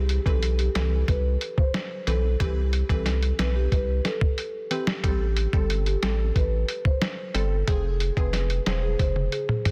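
A deep, saturated sub bass sits up front in this sunny, summery dancehall excerpt at 91 BPM, joined by a muffled, thumpy, pitched-down sampler-style drum kit, a warm marimba melody with tape echo, and crisp, detuned wavetable chord stabs with a wave-folded pluck, moving through Cmaj7, Am7 and Fm in a dense, heavily limited mix before a drum fill at 9.0 seconds.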